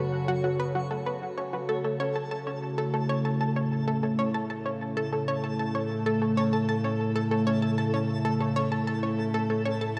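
Mysterious and cosmic, this excerpt of ambient, sequencer-driven space music rests on an evolving wavetable pad whose morphing, unison chords carry chorus, phaser and shimmer reverb, while a round, bright analog pluck with a sub octave plays a riff up front through analog delay. Beneath them a detuned sawtooth and pulse-wave drone holds the bass with slow-attack chorus, and a twinkling granular texture adds sparkling octave-up shimmer. All four parts sound together throughout the 10 seconds, moving from F#m to A at 1.7 s in an echo-heavy mix bathed in a plate reverb of 2.7 s.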